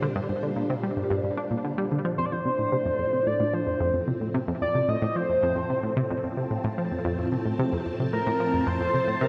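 Hypnotic and cosmic, this short cut from a longer piece of ambient, sequencer-driven space music moves at 111 BPM in a straight 4/4, shifting from G minor to F. A tight, driving sequenced synth riff with a detuned sawtooth pluck and mellow chorus runs throughout beneath swirling, vintage string-machine chords colored by ensemble chorus and phaser. At 2.2 seconds a shimmering, warbling pulse-width lead enters with a vibrato-laced melody and analog delay, all set in a wet plate reverb.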